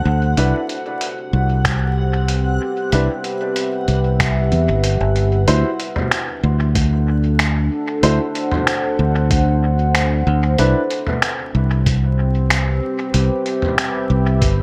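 A straight 4/4 pulse at 94 BPM carries this spacious, peaceful ambient dub cut in D mixolydian, where a muffled, tape-warm sampler-style kit of finger snaps, hi-hat and toms with dub echo joins at 0.4 s beside dark, woody upright piano stabs, a thumpy electronic kick enters at 1.6 s under a punchy, up-front fingered electric bass, a deep, warbling ambient pad with chorus sustains Cmaj7 and D7 chords, and a reversed, dreamy swelling texture sits in the background until 5.5 s, all over vinyl crackle and light digital ambience.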